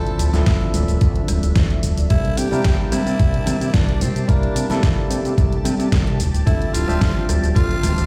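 Sleek and groovy, this nu-disco excerpt sets a growling, raspy tenor saxophone melody over barky tine electric piano, a lush detuned unison pad with chorus and phaser tucked in the background, a fat saturated analog bass, an electronic pop kit with deep overdriven snare, congas with hard hands, and a gritty, thumpy electronic kick entering at 0.5 seconds, all heard through a bare stone room on a big sound system, with pad and piano pumping under the sidechain across Dm9 and C13 chords.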